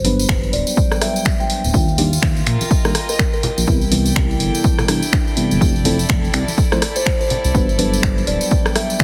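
This relaxed, soulful deep house excerpt at 124 BPM opens straight away on soft, round FM electric piano stabs, colored by chorus, cassette tape grit, sidechain pumping and dub echo, over a smooth, dark synth bass that also pumps, a tape-warm layered kit of finger snaps, hi-hat and rim click, and very quiet congas played with soft hands. A jingly, close tambourine comes in at 0.2 seconds, followed by a dry, punchy analog kick up front at 0.3 seconds, and the 16th-note swing gives the groove an easy, loping feel. A woody, hollow kalimba enters at 0.5 seconds with a mellow, ringing melody trailed by dub echo. At 0.7 seconds a pure, floating studio string section adds a bowed backdrop that breathes with sidechain pumping. The harmony drifts through lush extended chords, Gmaj7, Ebmaj9, Cmaj9, Fmaj9 and Gmaj9, while a small room ambience and a heavily compressed, radio-like sound give the whole fragment a loud, squeezed, intimate finish.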